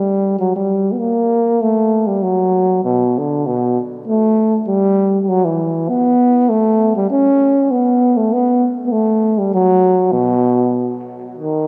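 Alpine folk in B minor sets a bouncy, festive mood at 98 BPM in a straight 2/4 metre. A mellow euphonium carries the piece as a solo from 0.0 to 11.7 s, moving between B2 and C#4 in a classical style with a light vibrato. The horn sits up front, and an analog delay trails its phrases. A recital hall reverb with an RT60 of 1.7 s gives the sound a wet, roomy bloom. This short passage is cut from a longer piece.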